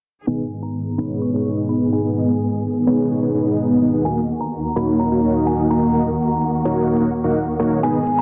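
A straight 4/4 pulse at 127 BPM drives this emotional, anthemic festival progressive house passage in G# minor, cut from a longer piece, moving from G#m to D#m at 4.1 seconds. A huge, detuned supersaw riff sits up front with a thick, compressed, tape-tinged character, while a lush bowed string section holds sustained chords under a filter sweep and a glassy FM bell carries the crystalline, chorused melody with delay. An overdriven, metallic electronic hi-hat arrives in the background only at 7.8 seconds, all set in a hall reverb under a dense, heavily limited master.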